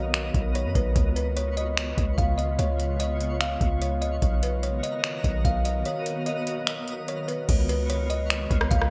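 A woody, ringing kalimba melody opens this dreamy, blissful excerpt of atmospheric cloud-rap, set over an ethereal pad of detuned, sustained chords with chorus, tremolo and sidechain pumping, a boomy, sine-based 808-style bass, and a sparkling granular texture. At 0.1 s a booming analog drum machine joins in a half-time feel, its deep kick, metallic hats, finger snaps, rim clicks and crash cymbal carried by gated reverb, with a break from 5.9 to 7.5 seconds. The kalimba, bass and drums sit up front in a bright 1980s-style digital production with light ambience, the kalimba passed through a low-pass filter and digital delay.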